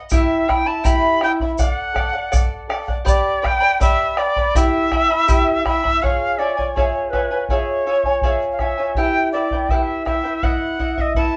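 A wet small room gives this live ensemble recording a close, earthy presence, with the players heard together in one space and a short reverb around them. It is a wistful Andean folk piece at 81 BPM in a straight 2/4, cut from a longer performance. The airy cane quena carries the melody up front, its crisp, chiffy attack and expressive vibrato sitting close to the ear between B4 and B5. Beneath it, a fingerpicked charango shimmers with double strings, some doubled at the octave, and the deep, dark bombo anchors the pulse. A grainy tube shaker adds texture until it stops at 5.5 seconds. The harmony moves through Em, D and G in the first section, then shifts to C# at 6.0 seconds before returning to Em and settling on B/E.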